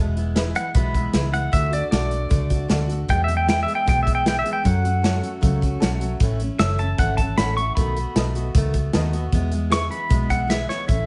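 A straight 4/4 pulse at 154 BPM drives this easygoing, heartfelt slice of honky-tonk and classic country, cut from a longer piece. A natural country drum kit with a punchy kick and medium-tuned snare sits up front alongside a dark, round, foam-muted fingered electric bass and a full-bodied picked dreadnought acoustic guitar picking through chords that move from E through D, F#m, A and B7 before settling back on E. Carrying the melody throughout is a bright, twangy pedal steel guitar, played with fingerpicks and compressed, using slide and volume swells as it takes a solo high in its range. A jangly, metallic tack piano with short sustain adds percussive color in the background, and a drum fill at 10.7 seconds ushers in a very quiet, floating string section bowed sul tasto at 10.9 seconds. Moderate studio reverb places the band a little further back in the room, giving the sound a soft, rounded top.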